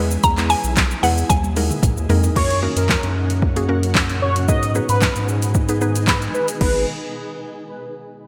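A straight 4/4 dance-pop groove at 113 BPM from a smooth, up-front R&B drum kit (soft kick, fat snare, metallic hats, handclaps, shaker, crash and toms, with a fill from 1.3 to 2.4 seconds) drives this confident, energetic passage in G# minor, where a deep, round analog bass pumps beneath a shimmering, ethereal pad that also pulses with the sidechain, a woody, percussive mallet-like synth pluck plays chorused accompaniment while a second pluck carries the opening melody through digital delay, until a bold, retro octave-doubled sawtooth lead with phaser and delay takes the tune at 2.4 seconds, set in a bright 1980s-style digital production with light reverb.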